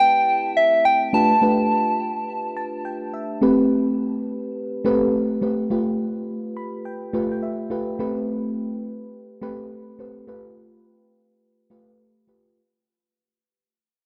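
A soft, round synth lead with chorus, digital delay and gentle vibrato carries a brief melody over a mellow, full-bodied FM electric piano colored by chorus and phaser in this bouncy, slick R&B excerpt at 105 BPM with a swung 16th-note feel in A minor, the lead stopping at 2.8 s while the piano plays fills, rocks between Am9 and G9, and fades out from 3.4 s to 12.6 s inside a lush hall reverb and a dark production.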